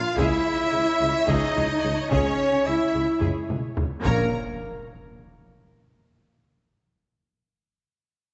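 Dark French horn chords dominate this dramatic, heroic epic orchestral film score at 217 BPM in 7/8, shifting from Dbm to Bbm at 4.0 s, as distant bright trumpet stabs ring out, a very quiet chamber violin section carries the vibrato melody over a lush symphonic violin second line, smooth viola accompaniment and a low end of cello, mellow tuba and woody double bass, while a vintage-sounding taiko ensemble with hard sticks plays a fill in the background before a huge impact lands at 4.2 s, all within a wet concert hall reverb.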